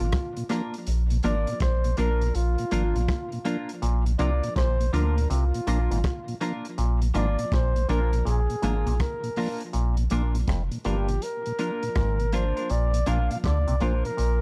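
A laid-back roots reggae groove at 81 BPM in Bb mixolydian, swung on the sixteenths, rides on a gritty, saturated breakbeat kit of hi-hat, tight kick and rim click, with a deep, round sub bass sitting up front. A dark tonewheel organ with slow rotary speaker and tape echo, a bright, scooped semi-hollow electric guitar with lush chorus and tape echo, and a stringy, nasal clav riff entering at 3.8 seconds fill out the dry, close 1970s-style sound. A mellow flugelhorn with vibrato carries the melody through tape echo, taking a solo from 9.7 seconds until this excerpt cuts off at 14.4 seconds.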